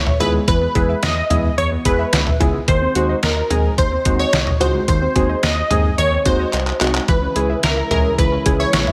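A punchy, funky polysynth comp sits up front carrying the melody, its detuned sawtooth and pulse-wave tones shaped by a filter sweep and a moving notch, with chorus and digital delay on it. This short synth-pop excerpt moves at 109 BPM in a straight 4/4, cool and melancholic in mood, over chords that shift from E to G#7 and settle on C#m at 7.1 seconds. A detuned 8-bit drum machine with a thumpy kick, medium-tuned snare, hi-hat, handclaps, cowbell and toms has a sampler-style, small-room character, and it plays a fill just before that change. Beneath it, a round, deep analog bass blends sawtooth, sine and triangle waves into a dark, evolving low end. Analog keys with a pulse-wave bite and a filter sweep fill in the accompaniment, while a warbling, lo-fi pluck with a sub octave spins arpeggios in the background, treated with chorus and digital delay. At 7.1 seconds a smooth, soft-attack pad enters with sustained chords, and light reverb gives the whole mix a touch of space.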